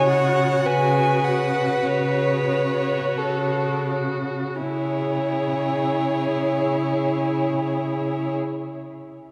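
All four bowed strings of a quartet sound together from the opening, in a slow, solemn and elegiac classical movement with a pliant rubato feel that slows over the first 4.6 seconds. A focused, vibrato-rich first violin carries the melody above a smooth second violin. An airy, intense viola provides accompaniment, while an up-front, even cello anchors the bass, and the harmony settles onto a minor chord at 4.6 seconds as the passage is cut from a longer piece, bathed in the long, wet reverb of a church.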